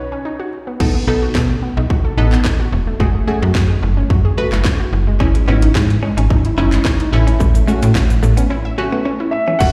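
Bittersweet and driving, this dance-pop excerpt moves at 109 BPM in 4/4, built on a bright sawtooth chord stab and a lush, warbling unison pluck that pump against the sidechain, joined at 0.8 seconds by a snappy, metallic FM bass and an up-front house drum kit with cracking snare, handclaps, hi-hat, shaker and crash. An intimate concert grand piano with audible action noise and tape echo carries the melody only at the very start and again from 9.3 seconds, while a twangy, clean electric guitar riff slips into the background at 5.2 seconds under lush chorus. The chords pass from Badd9 through B7, F#madd9 and C#madd9/G# to A, and the mix sounds like a live gig heard through the venue's PA, with recital hall reverb.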